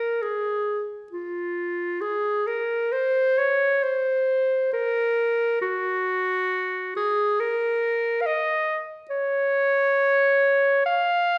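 A bright, close-miked clarinet carries this short classical passage entirely alone, sitting up front and playing from 0.0 to 11.4 seconds. The line moves freely with expressive rubato over a loose 4/4 pulse, its range spanning F4 to F5. The mood is lonely and meditative, a single voice thinking aloud. A wet recital hall reverb surrounds the clarinet, letting each phrase hang briefly in the room before fading. Cut from a longer piece, the passage captures one solo statement.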